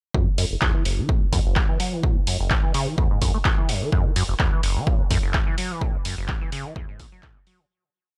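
A squelchy, resonant sawtooth acid bass line with accents and slides, carrying tube saturation, subtle chorus and tape echo under a filter sweep, drives this hypnotic acid house piece at 127 BPM in F# minor, over a punchy four-on-the-floor electronic kick and an analog drum machine's open hats and claps, all dry and gritty, before a fade-out from 5.2 to 7.7 seconds.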